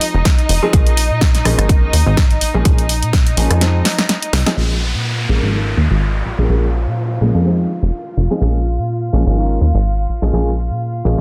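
Dense, heavily limited and set in a digital ambience, this short cut from a longer filtered disco house track runs at 125 BPM in Bb minor with a lightly swung 16th feel, its mood nostalgic and sensual. A plucky, up-front analog bass with a funky sawtooth and square-wave bite and a fast-attack, decaying filter pluck carries the low end through a low-pass filter and sidechain pumping, while a rich, earthy violin section holds sustained chords with light vibrato, roughened by vintage 12-bit sampler grit and likewise filtered and pumping. From 0.6 seconds a concert grand piano with deep bass, a boxy tone and long sustain adds accompaniment through phaser, low-pass filter and sidechain pumping. A punchy, tape-toned analog drum machine supplies hi-hat, rim click and snare, its hats pumping, alongside a layered, up-front electronic kick that was re-recorded in a small room; the kick drops out at 3.6 seconds as a drum fill plays, and the drums stop after a band accent at 4.5 seconds. 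Filter sweeps shape both halves, and an electronic downlifter passes beneath much of the second half over the cycling Fm7, Bbm7 and Absus24 chords.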